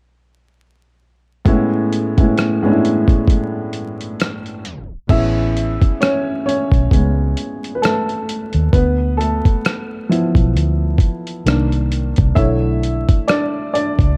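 Dark, dusty production sets the scene, with vinyl crackle, a faint mains hum and light reverb wrapped around a cosy, mellow lo-fi hip hop groove in A major at 66 BPM with a gentle swing, cut from a longer piece. A woody, boxy upright piano enters at 1.4 seconds with intimate, short-sustained accompaniment and audible action noise, joined almost at once by a compressed, sampler-style drum kit whose thumpy kick, hi-hat, rim click and crash carry overdriven, 12-bit grit. A tape stop pulls the music down at 4.6 seconds. At 5.1 seconds a dark, round, foam-muted electric bass arrives, amped and punchy, as the piano takes a solo. The harmony drifts from Amaj9 through Dm6 and Cm7 to Bm7, with piano, drums and bass all sitting up front in a mellow, warm-toned mix.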